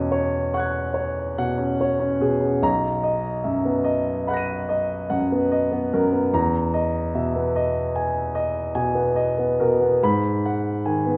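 A solo concert grand piano opens this dreamy, hazy impressionist classical piece, its warm, open tone sitting up front with deep bass and a span reaching from B1 up to D#7. Moving in a rubato 9/8, the harmony drifts from E6/9 to Bmaj7 at 2.6 seconds, then through Emaj7#11 to G#m7 at 10.0 seconds before the fragment breaks off at 11.2 seconds. A moderate recital hall reverb gives the piano a soft halo of room sound.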